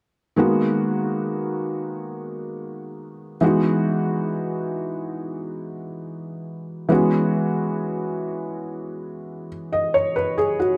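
A felt-muted upright piano opens at 0.4 seconds, playing soft, mellow chords up front in a small room with light reverb, its hammer action audible in the intimate sound. This sensual, moody R&B excerpt moves at 69 BPM in G# minor, the piano carrying the harmony through G#m7, Emaj7 and F#7sus4 until it stops at 10.8 seconds. The production is dark and warm, cut from a longer piece.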